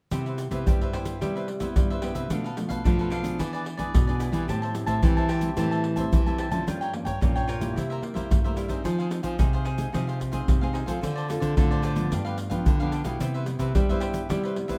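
Samba and choro in a straight 4/4 feel, this sunny, festive excerpt is cut from a longer piece and runs as a single section of about fifteen seconds. Tube shaker, surdo and pandeiro sit up front with a close, dry sound, played with hard hands around a deep surdo. A fingerpicked nylon-string guitar carries the bass line with a full-bodied, deep classical tone, while a second nylon-string guitar, fingerpicked on fresh strings, fills out the accompaniment in the middle register. Above them a picked cavaquinho adds a warm, crisp accompaniment in the upper register. The harmony moves from Cmaj7 through Bm7b5, E7 and Am7, then Gm7b5, C7 and Fm7 before Dm7 and G7 bring it back to Cmaj7 at 13.2 seconds, all set in a light reverb.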